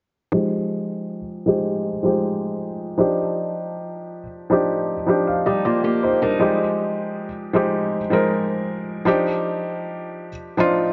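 A light reverb and small-room ambience frame this short excerpt of contemporary R&B, its sound rolled off above 7.5 kHz and carrying a filter sweep from start to finish. At 79 BPM in a straight 4/4 and in F dorian, the mood is sensual and late-night. A felt-muted upright piano sits up front and plays the accompaniment from 0.3 to 10.9 seconds, its tone soft and intimate with thin felt, short sustain and audible action noise, shaped by a low-pass filter. Between 5.5 and 6.6 seconds a picked acoustic archtop guitar adds brief arpeggios, bright and close with a touch of finger squeak, run through a low-pass filter and tape echo. The harmony alternates between Fm9 and Ebmaj9, giving the passage a hazy, unresolved glow.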